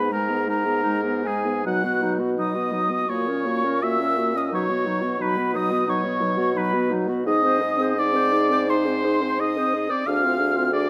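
A moderate concert-hall reverb surrounds this short, solemn and elegiac excerpt for wind quintet, a slow romantic classical movement in 4/4 at around 86 BPM with uneven, rubato beats. An airy, hollow silver flute carries the tongued melody with vibrato high above an up-front oboe, whose soft attack and light vibrato give its second line a gentle glow, while a dark French horn and a clarinet set back in the background supply accompaniment. A mellow, vintage-toned bassoon anchors the bass as the harmony moves from G#m through B and F#/A# before closing on Dm7b5 at 10.1 seconds.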